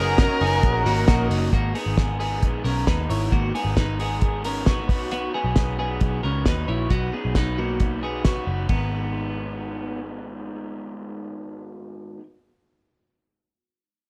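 A cloth-damped, thuddy drum kit sits up front in this wistful, bittersweet fragment of jangly indie pop, with a fat snare, tight kick and dark cymbals under a rolled-off top, playing from 0.2 to 8.8 seconds. Beneath it a vintage, foam-muted picked electric bass, round and punchy, holds the low end, while a bright, twangy twelve-string electric guitar plays compressed arpeggios through slapback echo and plate reverb until 10.0 seconds. A lo-fi, overdriven garage guitar carries the accompaniment to the close. In the opening moments, a high-gain lead guitar cuts in with a brief distorted melody, a buzzy transistor combo organ with light vibrato adds a fill in the background, and a very quiet, lush bowed string section holds woody sustained chords. The harmony moves from D#m7 to G#madd9 and Badd9 before returning to G#madd9, all in a straight 4/4 feel with a light room reverb.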